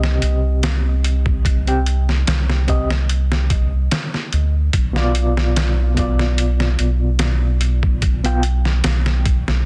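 A slow, hypnotic trip hop excerpt at 73 BPM in C minor opens with a gritty, pitched-down sampler drum kit, a deep, round analog bass sitting up front, and a reedy, overdriven electric piano pulsing with fast tremolo and tape echo through a combo amp. The lightly swung groove rests on a thumpy kick and medium-tuned snare bathed in studio reverb, while the harmony moves from Cm to a rootless G7/B at 4.7 seconds. The electric piano drops out at 8.4 seconds, leaving bass and drums to carry the cinematic mood in a dense, heavily limited digital ambience until the cut at 9.7 seconds.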